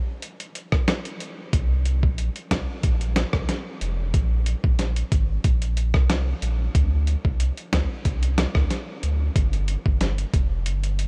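A dusty, sampler-style drum kit opens this hypnotic, tough dancehall excerpt at 92 BPM, its thumpy kick, fat snare, rim clicks and hi-hat sitting up front with gritty overdrive and a vintage 12-bit crunch, as if re-recorded in a small room. At 1.5 seconds a deep, round sub bass enters, its sine tone sustained and mellow beneath the compressed beat, ranging from F1 to D2. A light reverb frames the sparse pairing through to the end at 11.1 seconds.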